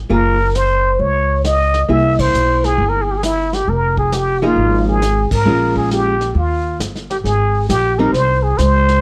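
A plunger-muted trumpet leads this late-night, swinging jazz excerpt, its raspy, growling tone full of wah-wah color, scooped notes, light vibrato and a soft attack, sitting close and up front. Beneath it, a woody pizzicato upright bass on steel strings holds the low end with a warm, forward presence, while a hollow-body archtop guitar, clean, picked and compressed with a dark edge, supplies the accompaniment until 8.1 seconds. A vintage brush kit sits mid-forward, with brushed snare, hi-hat, a punchy kick and dark cymbals under a rolled-off top. The small group swings at 134 BPM in 4/4 in F minor, moving through chords such as Gbmaj9, C7b13 and Fm7, with band accents at 2.1 and 5.2 seconds before a new section arrives at 7.2 seconds on an Ab chord. Light reverb gives the studio room a gentle glow around the players.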